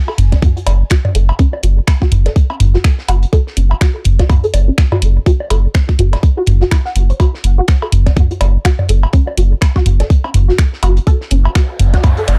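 A tight, up-front electronic kick and a thick, saturated sine sub bass holding F#1 with sidechain pumping anchor this quirky, hypnotic minimal techno excerpt in F# minor at 124 BPM, swung at 58% on the 16ths, while a squelchy, detuned sawtooth blip pluck carries a resonant riff between C#4 and F#5 through phaser, ensemble chorus, delay and a filter sweep that runs across the whole 12.4 seconds. Overdriven electronic cowbell, toms and woodblock add analog grit, a garage kit supplies finger snaps and hi-hat, and a muffled, lo-fi acoustic kit with a fat snare and rolled-off top sits very quiet in the background. An electronic riser enters at 11.4 seconds, all within a dark, dry production.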